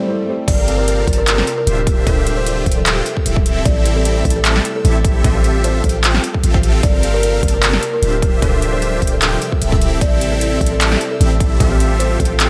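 A booming, deep 808-style bass anchors this bittersweet, emotional future bass excerpt, where after a brief opening of soft felt-muted upright piano and an electronic swell, the drop arrives at 0.5 seconds with a punchy overdriven kick, a huge-snared dance kit with metallic hats, lush detuned supersaw chords and a woody, ringing kalimba melody in a half-time groove, the chords and kalimba pumping, joined at 0.8 seconds by an airy, breathy pad in the background.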